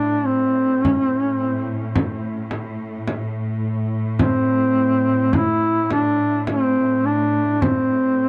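Solemn and longing, this short cut from a longer Caucasian folk lament drifts in a rubato 3/4 at 53 BPM in A minor. A duduk carries the melody between C4 and E4 with a soft attack, vibrato and scooped notes, while a smooth, clear symphonic string section holds a bowed A2 drone underneath. A deep, saturated frame drum played with hard hands enters at 0.8 seconds and stops at 7.9 seconds, all inside a dry, close 1970s-style studio sound touched by reverb.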